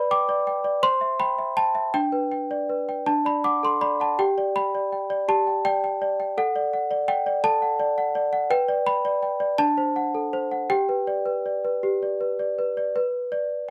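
Tender and dreamy, this short classical lullaby fragment sways in a rubato 6/8 at 54 BPM in G major, with a worn celesta playing alone from 0.0 to 13.7 seconds across a range of D4 to D6. The celesta sits up front with a bell-like, sweet, bright tone from hard felt hammers, its slightly out-of-tune pitch adding a delicate charm under light reverb. The harmonies move through C, D and D7 before settling on G at 10.7 seconds, then close on a rootless G/B.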